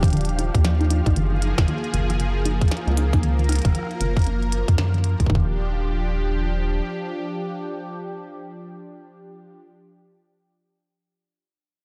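Swung sixteenths at 116 BPM drive this playful, glitchy IDM fragment in Eb major, where a tight, up-front electronic kick and a glitchy kit of tiny snare, clicky hats and rim clicks with delay sit under a rubbery, hollow square-wave bass, a warbling, lo-fi pluck running arpeggios through chorus and delay, and a grainy, flickering texture pumping softly in the background, over smooth, detuned pad chords moving from Ebmaj9 to Gbmaj9 that carry on alone after the bass stops at 6.8 s, in a dark production with light digital ambience.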